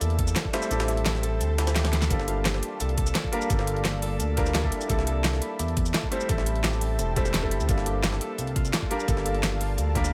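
Liquid drum and bass at 172 BPM in G dorian, this lush, melancholic excerpt from a longer piece moves through rootless C13, Am7 and Gm9 chords. A clear baby grand piano with digital delay carries the accompaniment over an ethereal, detuned chorused pad and a bright, ringing Celtic harp playing delayed arpeggios in the background, while a smooth, dark gliding synth bass sits up front. The drums layer a knocking electronic kick, an up-front pop kit with fat snare, crisp hats and shaker, and a gritty, pitched-up jungle sampler-style kit tucked behind; the kick drops out from 0.7 to 2.1 seconds, with a drum fill at 1.8 seconds.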